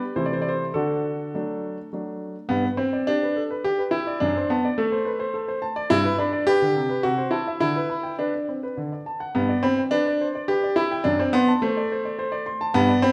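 Cheerful and graceful, this short cut from a longer classical-period sonatina in 3/4 features a warm, natural-sounding baby grand piano played solo and up front, ranging from F#2 to C6 and moving through harmonies like G, D and Am/C, all bathed in the wet reverb of a recital hall.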